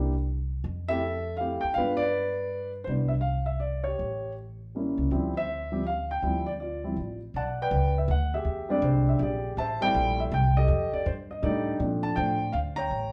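Set in a wet, short club reverb that places the listener further back in the room, this cool, late-night swinging jazz waltz, cut from a longer piece, pairs a dark, mellow concert grand carrying the melody over rich extended chords such as Fmaj7, A7b9 and E7alt with a woody, thumpy pizzicato upright bass, both playing throughout.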